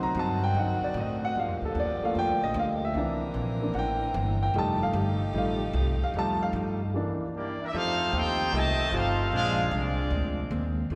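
Big band swing at 151 BPM with a swinging, brassy mood, this excerpt opens with a grand piano solo of deep bass and natural tone, supported by a dark, clean hollow-body electric guitar in the background, a warm saxophone section holding soft-attacked sustained chords with vibrato, and a woody pizzicato upright bass up front, until a stop at 6.9 seconds gives way to a brilliant, tight trombone second line from 7.3 seconds, joined at 7.4 seconds by a bright trumpet section carrying the melody with light vibrato, all within a wet church reverb.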